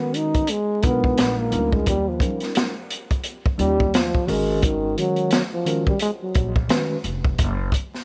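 Jazz-hop at 87 BPM with a lazy 16th-note swing in G# dorian, this mellow, nocturnal excerpt opens with a dark, punchy trombone solo up front, its light vibrato and smooth top riding an analog delay over a clean tine electric piano heard through its built-in speakers. An open acoustic jazz kit with a boomy kick and high-tuned snare comes in at 0.1 seconds, and a woody pizzicato upright bass on thumpy gut strings joins at 0.8 seconds. Chords move from G#m9 through A#7 and D#9 to G#7sus2, all wrapped in small room ambience and vinyl crackle, before the harmony drops out at 7.4 seconds.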